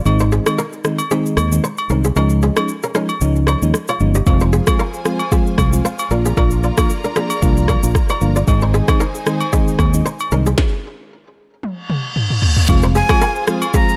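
Smooth, mellow afrobeats excerpt at 114 BPM in F minor, where an up-front fingered electric bass and an overdriven click drum kit with deep kick and tiny snare carry a soft, round FM electric piano with chorus, a ringing, fingerpicked kora riff with digital delay, quiet agogo bells and woodblock, and a downlifter with reverse cymbal, while a lush bowed string section enters at 4.3 seconds, the groove stops at 10.6 seconds ahead of a drum fill from 11.6 seconds, and a breathy, reedy jazz flute takes the melody at 13.0 seconds.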